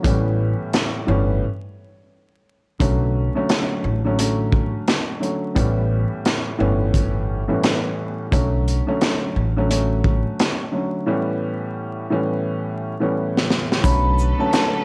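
Boom-bap hip-hop with a dark, tough mood, built on a crunchy, saturated breakbeat kit with a punchy kick and high-tuned snare, a growly pizzicato upright bass and a mellow, vintage upright piano, all under vinyl crackle and small room reverb, with breaks and a drum fill before a ringing vibraphone, lush bowed strings and a grainy egg shaker arrive at 13.8 seconds as this cut from a longer piece ends.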